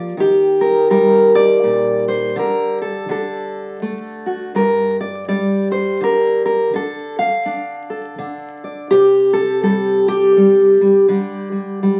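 Haunting and reflective, this solo folk fingerstyle piece moves at 83 BPM in a swung 3/4, a short cut from a longer work carried entirely by a fingerpicked steel-string acoustic guitar ranging from G2 to F5. The guitar sits up front with a warm fresh-string ring, audible finger squeak and a full auditorium body, wandering through Eb, Dsus4, D, G5, Dm and C5 before settling back on Dsus4 at 11.1 seconds. A wet club reverb surrounds it, and the whole sound carries the dusty crackle of a very old 78 rpm record.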